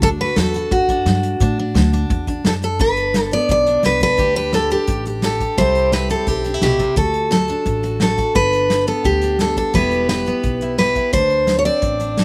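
A dry, open-air sound with little reverb frames this easygoing, heartfelt honky-tonk and classic country fragment in G major at 173 BPM: an up-front, bright, full-bodied dreadnought acoustic guitar picks the melody over a second picked dreadnought with fresh strings, a woody, thumpy pizzicato upright bass on gut strings, and an acoustic kit played with bundle sticks (tight kick, medium-tuned snare, hi-hat), while a twangy, clean pedal steel adds barely audible sustained chords with volume swells until it stops at 2.8 s.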